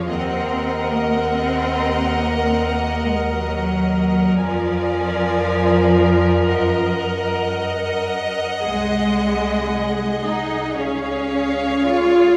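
Classical slow romantic movement for string orchestra, tender and rubato in 4/4, cut from a longer piece, where a distant violin section carries the melody above a lush second violin line, bright viola accompaniment, an up-front cello section and a close double bass section, all bowed with vibrato and heard from further back in a wet recital hall, as the harmony moves from Ebm through Bb7/F, Ebm/Gb and Ab7/C to settle on Db at 10.8 s.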